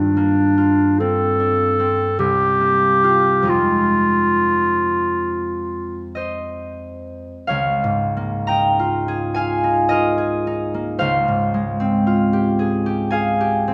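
A wet recital hall reverb surrounds this mysterious, wistful impressionist duo in F minor, cut from a longer piece and moving in a rubato 3/4 at 42-57 BPM. The up-front clarinet sings a warm, smooth-topped classical melody over the ringing, fingerpicked concert harp, moving through Gm11, C7sus4 and Fm9. The clarinet stops at 6.2 seconds, and the harp carries on alone through Db69 and Fmadd9/Db until 13.7 seconds.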